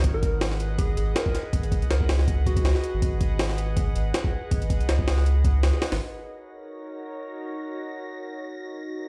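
Drum and bass with a jungle edge at 161 BPM in Eb minor, this nostalgic, atmospheric fragment opens on a drop where a gritty, overdriven sampler-style kit with a thumpy kick and high-tuned snare sits up front beside a deep, round dub sub bass. A warbling, lo-fi pad holds chords over Abm7 then Ebm7, while a gentle FM keys-like lead with vibrato and dub echo plays a short line until 3.1 s. The drums and bass stop at 6.0 s, leaving the pad to carry the sound, joined at 6.7 s by an airy, breathy wind-like noise texture, until the end at 9.1 s, all set in a large studio reverb.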